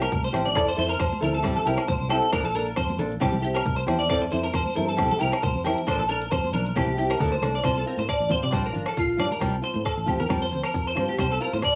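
A swung sixteenth-note groove at 136 BPM in 4/4 drives this carefree, danceable highlife guitar band cut, taken from a longer piece in C mixolydian and opening with a short drum fill in its first 0.6 seconds. The tight, tape-warmed electronic kit of hi-hat, kick drum and rim click joins a round, dark fingered electric bass, while ringing agogo bells and high-tuned, soft-handed congas stay in the background and close, grainy maracas add a mellow shimmer. Up front, a bright, twangy clean electric guitar plays picked arpeggios through ensemble chorus, analog delay, cassette tape and plate reverb. Beside it, a fingerpicked classical nylon-string guitar, also colored by cassette tape and plate reverb, supplies the accompaniment. The harmony moves between C, Fmaj7 and Bbmaj7 before shifting at 7.6 seconds to a section built on Csus4, Bb6 and Fsus2, all heard through the light reverb and homespun character of a cassette home recording.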